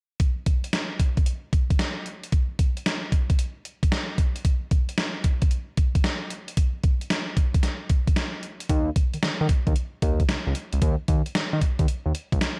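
A swung sixteenth-note groove at a bouncy, slick new jack swing lilt opens with a gated 80s digital drum machine playing hi-hat, thumpy kick and a gated-reverb snare with a tape-softened, roomy punch. At 8.7 seconds a fat, nasal, saturated analog bass with a sawtooth edge, ring modulation and a filter sweep joins it up front, all within a dark, dry R&B mix cut from a longer piece.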